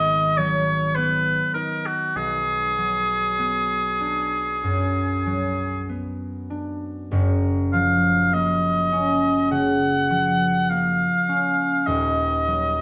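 A moderate stone-room reverb gives this short excerpt from a longer classical piece a gently resonant, luminous air, framing a dreamy impressionist duo that moves slowly and freely in rubato. A solo oboe carries the melody throughout, its classical tone colored by light vibrato and a distant, roomy quality. Beneath it, a fingerpicked concert harp supplies ringing, up-front accompaniment in its lower and middle range, the harmony drifting from G#m7 through Bm6 to F#maj7 and settling on D#m7 at 11.9 seconds.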